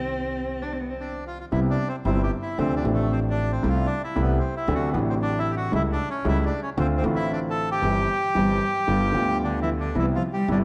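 A rubato tango in 4/4 at 114 BPM, this elegant, playful passage in C major is cut from a longer piece. A single bowed cello opens with expressive, soft-attack phrasing full of vibrato and portamento, and a reedy, bright bandoneon then carries the melody up front from 1.0 seconds. The cello returns near the close at 9.4 seconds. Beneath them, a dark grand piano supplies mellow, intimate accompaniment with short sustain and audible action noise, while a pizzicato upright bass on gut strings adds a woody, thumpy low end. The harmony moves from a C minor opening into Cmaj7 and through Dm7, D7 and G7 before settling back on Cmaj7, all set in a recital hall reverb with a 1.5-second tail and a dusky, warm production.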